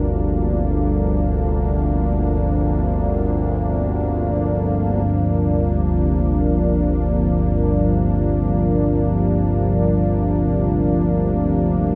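Ominous and dark, this free-time ambient drone excerpt pairs a warbling, vintage analog drone of sawtooth and pulse-wave tones low in the range with a bright, full-bodied resonant pad holding sustained chords over G minor, both soaked in chorus and a cavernous cathedral reverb, while a filter sweep on the drone from 5.0 seconds onward pushes the texture into its second section.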